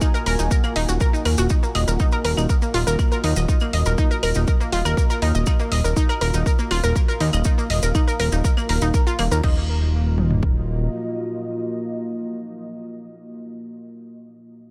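A punchy, up-front kick and toms from a layered electronic house kit drive this hypnotic, melancholic melodic techno excerpt in a straight 4/4 metre, sitting over an Ebmadd9 chord. A fat, detuned sawtooth bass enters at 0.3 seconds, its filter-plucked notes sustained and evolving as they pump against the kick. Above it, a round, bright analog pluck spins arpeggios colored by chorus, vintage 12-bit sampler grit and dub echo, also pumping with the kick. A second layer of the kit adds claves, a crash and bright hi-hats, while grainy, mellow maracas from a small room add texture further back. Behind everything, a deep, moody ambient pad holds dark, full-bodied chords with a slow attack, chorus and its own reverb, and it lingers alone after the other parts fall away near 11 seconds, carrying the piece into a sparser closing stretch until about 13.3 seconds.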